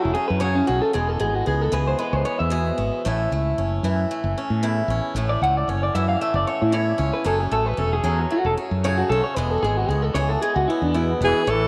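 Highlife at 114 BPM in 4/4 with a straight feel, this danceable, warm excerpt sits in A major and moves through F#madd9, E and A. Up front, a picked swing-style acoustic guitar supplies bright, boxy accompaniment. An electric guitar through a small old amp plays slightly broken-up, compressed arpeggios bathed in lush chorus and tape echo, and a clean solo runs from the start until 11.5 seconds. Underneath, a mellow fretless electric bass sounds dark, round and punchy, reaching down to E1. At 11.2 seconds a breathy alto saxophone arrives with a whispered, intimate melody marked by vibrato and scooped notes, joined by a trombone with plunger mute adding a wah-wah second line on E3. Light reverb and small room ambience keep the sound close.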